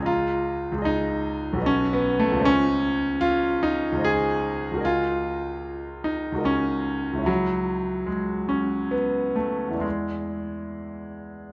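Moving in an unhurried triple metre with a freely breathing rubato, this short cut from a longer impressionist piano work drifts rather than marches, its pulse stretching and relaxing from bar to bar. A single grand piano carries everything from the first moment to the last at 11.5 seconds, ranging from deep bass to a bright upper register, and its tone is clear, polished and up front, close enough that the clicks and thumps of the action are audible. The harmony glides through colourful, ambiguous chords, passing from an opening added-sixth sonority through lush major-ninth and eleventh colours, settling on a minor seventh near 7.3 seconds and ending on an augmented seventh at 9.8 seconds that leaves the phrase suspended. A moderate recital-hall reverb gives the notes a soft halo, while the overall production leans dark and mellow. The mood is hazy and serene, an intimate, dreamlike reverie.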